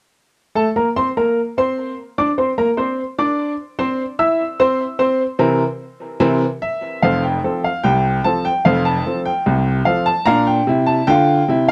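Ragtime piano in a cheerful, lively 2/4 with a straight feel, this short cut from a longer piece features a solo upright piano with a clear, woody, vintage tone and long sustain sitting up front in a small room, moving from Bbadd9 and C7 into a new section at 7.0 seconds that settles on F and then Bb.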